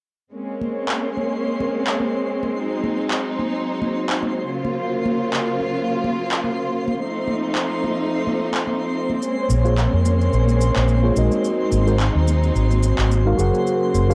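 A mellow fretless electric bass, dark, round and up front with an ensemble chorus, arrives at 9.5 seconds alongside a clean tine electric piano trailing tape echo, deepening this relaxed, wistful sunset chillout excerpt in Bb minor at 108 BPM with a light 16th-note swing. From the start, a studio string section holds smooth, bowed chords with vibrato through Bbm9, Ab7, Gbmaj7 and F7, while a twinkling granular texture adds sparkling, slow-blooming shimmer in its own reverb. Soft-handed congas sit in the background next to overdriven electronic handclaps and cabasa, all captured in a dry, gritty hardware recording.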